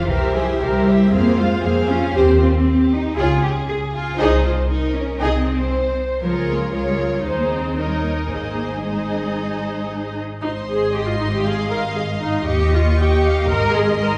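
Stormy and restless, this quick classical-period movement for string orchestra is cut from a longer piece, with a dark, woody violin section carrying the melody while a smooth, even second violin line moves alongside it. Beneath them, the soft-attacked viola section sits up front with its accompaniment, the lush cellos anchor the bass, and the double basses join at 0.1 seconds with an expressive, up-front low end. A scoring-stage reverb places the ensemble further back in a wet room, and the phrase returns at 10.4 seconds to settle on Ab at 13.5 seconds.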